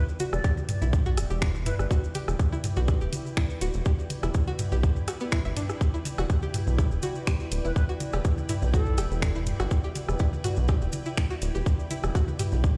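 Minimal techno with a cool, sparse mood, cut from a longer piece and resting on a single Em7 chord throughout its 12.8 seconds. An overdriven electronic kick sits tight and up front, joined by a garage drum kit of finger snaps and hi-hat with its own overdrive, while a booming, dry analog drum machine adds rim clicks and toms through a delay. A rubbery, nasal square bass bounces low and prominent with sidechain pumping, and a twangy, string-like resonator pluck carries the riff with chorus, delay and a filter sweep. A cloudy granular pad drifts behind, blurred and evolving with slow attack and built-in reverb, as grainy maracas sit close and dry in the background. An airy concert flute with vibrato and delay appears briefly at the start and again at 7.6 seconds, heard faintly in the background of a stone-room space played through a big sound system.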